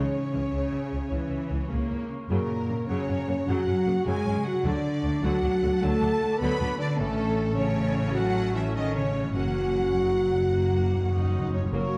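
A dark production set in the wet reverb of a scoring stage gives this heroic adventure film cue a roomy, cinematic sheen, in a soaring, adventurous mood at 102 BPM in a rolling 12/8. The melody sits with a studio violin section playing with vibrato and expressive portamento, set back in the mix and joined by a focused, lush symphonic violin section carrying a second line in the same register. A close viola section fills in the accompaniment, while a smooth cello section and an even, bowed double bass section anchor the bass beneath sustained chords from a distant French horn section. A mellow concert harp rings out arpeggios in the background as the harmony moves from C#m through F#, D and A before returning to F#. Timpani struck with medium mallets add a fill from 9.4 seconds, and at 11.7 seconds a brief entry brings in a solo clarinet and a solo cor anglais on a second line, with a trombone section holding chords in the background as the excerpt is cut off.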